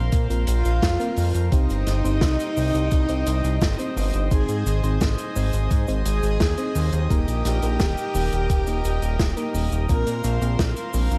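A fat, detuned sawtooth bass sits up front in this nocturnal, nostalgic synthwave passage in C minor, pumping with sidechain compression alongside an electronic kick drum with a thumpy, tape-colored sampler character and a touch of studio reverb. Behind them, a swinging big-band drum kit adds airy hi-hat, cabasa and a medium-tuned snare with a polished hall sound, the whole groove moving at a relaxed 86 BPM in a straight 4/4. A chorused pulse-width pad holds shimmering, retro chords with sampler grit and sidechain pumping, while a mellow FM electric piano plays soft, round stabs through chorus and digital delay in the background. From 0.5 seconds, a mellow alto saxophone carries the melody with light vibrato and a smooth top, joined by a vintage string-machine violin second line with ensemble chorus, both lasting until 10.3 seconds. The harmony moves from Bbsus2 through Cm, Ab and Eb before returning to Bbsus2, all within a dark production with light reverb, in this short passage cut from a longer piece.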